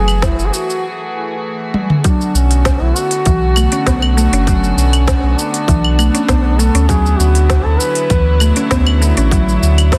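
A mellow, distant duduk with vibrato and scooped notes sings a hypnotic, mystical melody over warm bowed strings, a woody FM mallet pluck arpeggiating through chorus and tape echo, and a round sine sub bass pumping with the strings, while a tape-warm organic electronic kit of cabasa, claves, crisp hats, a woody snare and toms enters at 0.1 seconds with a tight kick joining at 0.2 seconds, breaking from 0.8 to 2.0 seconds with a fill before the chords move from F#m9 to Bm7 in this 99 BPM organic downtempo excerpt.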